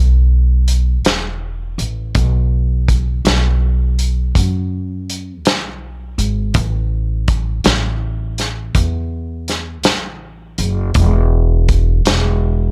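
A dry recording with little reverb opens this gritty, laid-back slow blues excerpt in E major, moving at 54 BPM in a straight 12/8. An upright bass with a woody, thumpy tone from gut strings plucks pizzicato from 0.0 s, sitting up front and ranging from E1 to F#2. A vintage drum kit joins at 0.7 s with a punchy kick, medium-tuned snare and hi-hat, its sound mid-forward with a rolled-off top, as if captured in a studio room.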